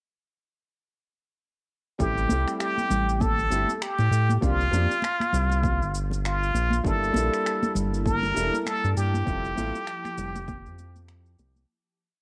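Sunset chillout at 99 BPM in 4/4, relaxed and smooth, with a lazy 16th-note swing that begins at 2.0 seconds and rides through a short, complete piece. Up front, a plunger-muted trumpet plays a brilliant, punchy, wah-wah jazz solo with vibrato, a free melody that never settles into a recurring motif. Beside it, a round, deep analog bass works a syncopated riff with a dark, tube-saturated edge, while a boxy grand piano adds syncopated rootless chord stabs over Am7, C9sus4, Gm69 and Fmaj9. The beat is a light lounge pattern of overdriven electronic cabasa and finger snaps with a soft, punchy electronic kick, joined by close, dry congas played with soft hands in the background. An ethereal, airy pad with ensemble chorus and its own reverb drifts in at 7.8 seconds, and a fade-out starting at 8.5 seconds carries the piece to its end. The whole thing has the hazy character of a home cassette recording in a small room with light reverb.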